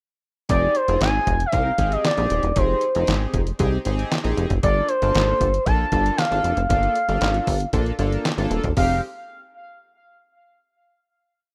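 Early-eighties boogie funk with a slick, danceable mood: a mellow, gliding chorused sawtooth lead sings hook phrases over glossy syncopated chords from a chorused pulse-width polysynth, a fat, plucky analog bass line with chromatic approach notes, and a thumpy, detuned 8-bit drum machine beat with clap-layered snare, all in a rough, dry home demo mix that moves from Fm9 to Gm9 before settling on a final Fm9 chord at 8.8 seconds.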